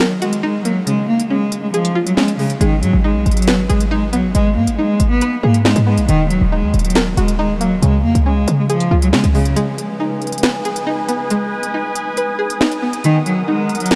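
Drill hip hop at 138 BPM in a dark, ominous half-time 4/4 feel, moving through Ebm, Db and Abm chords. A rich, bowed cello with vibrato and delay carries the melody over a twangy, bright resonator pluck colored by chorus and phaser. A drill drum kit with sharp snare and crisp, tape-tinged hats runs throughout, a punchy, tight 808-style bass sits up front from 2.6 to 9.6 seconds, and then an evolving, detuned sawtooth pad with a filter swell and slow attack holds sustained chords in a dreamy mix soaked in huge ambient reverb.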